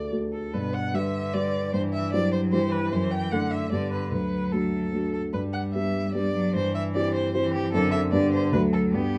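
A single focused, vibrato-laden violin carries the melody in this cheerful, graceful piece cut from a quick classical-period movement for piano trio in triple time with a rubato feel, while a dark, mellow grand piano sits up front with the accompaniment and a rich, smooth-topped bowed cello joins at 0.5 s with a second line, all set in a moderate studio reverb.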